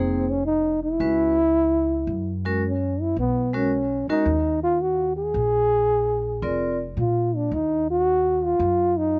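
A breathy, whispered trombone carries the melody up front in this smoky, moody excerpt of small-group swing jazz in Bb minor at 110 BPM, its dark tone shaped by vibrato, soft attacks and scooped notes. Beneath it, a vibraphone struck with medium hard mallets, motor off, adds a metallic, ringing accompaniment until 6.8 seconds, while a pizzicato upright bass gives a woody, thumpy pulse throughout. The dry, intimate sound has little reverb, as the harmony moves through chords such as Dbm7, B69 and Bb7 before settling on Ebm.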